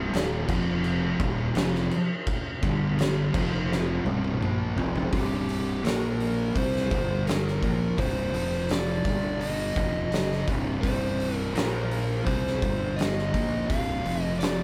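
Stoner and doom metal in C minor at 84 BPM, heavy and ominous, cut from a longer piece, where two dark picked fuzz guitars (one sitting in the background) grind out the riff over a growly overdriven fingered bass and an oversized low-tuned drum kit that sits up front with a boomy kick, fat snare, dark cymbals and a pumping big-room sound, before a drum fill from 3.7 s leads to a compressed, warm fuzz lead guitar melody entering at 5.1 s, all captured as a band playing live in one room with light reverb.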